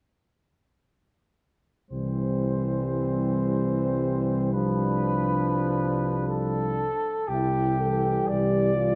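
From 1.9 s a brass band plays a lyrical, hymn-like classical passage in C major and 3/4 at a gentle, rubato 57-72 BPM: a mellow, soft-edged cornet carries the melody up front over a tight French horn section on the second line, a bright trombone and a smooth-topped euphonium in the background fill out the accompaniment, and a tuba anchors the bass, with light vibrato on the cornet, horns, trombone and tuba in a roomy concert hall reverb as the harmony moves from C to G7/C at 4.5 s and returns to C at 7.3 s.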